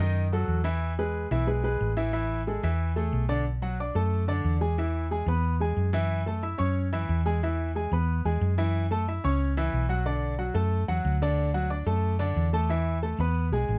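Close, detailed microphones and little reverb give this festive, danceable salsa fragment an intimate, dry presence, tuned slightly low to A4 = 438 Hz. A clear, natural grand piano sits up front, playing accompaniment in straight 4/4 at a brisk 182 BPM. Beneath it, a dark, round, amped hollow-body short-scale electric bass plays fingered lines throughout, moving through changes such as Bm7, E, F#m7 and D before settling on Esus4 near 12.7 seconds.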